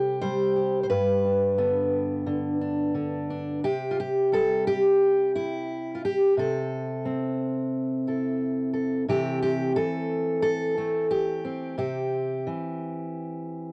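The recording has the soft, slightly dulled top of a home cassette tape, with very little reverb and a close, dry presence. A single fingerpicked steel-string acoustic guitar, sitting up front, carries this short folk passage cut from a longer piece, in an unhurried, straight 4/4. Fresh strings give the guitar a bright edge balanced by a warm auditorium-style body, and a finger squeak adds a personal touch. The harmony moves from an opening C5 to G, then settles on C at 3.6 seconds before shifting to Am/C and returning to C at 11.8 seconds. The mood is hopeful and warm, with the guitar ranging from G2 up to C5.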